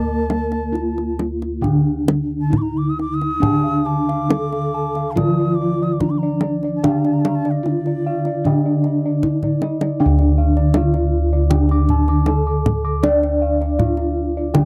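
A dry, close 1970s-style studio sound frames this hypnotic, shimmering Javanese gamelan passage in D pelog at 67-79 BPM in a straight 4/4, where a mellow bronze metallophone struck with padded mallets carries the melody over a second, wooden-mallet metallophone that rings out the accompaniment, round bossed gongs anchor the bass up front, a deep kendang supplies percussion with a drum fill just before 10.0 s, a vintage, band-limited set of bossed gongs adds arpeggios from 3.4 s, and an airy bamboo bansuri with vibrato and a crisp attack traces a second line until 9.0 s.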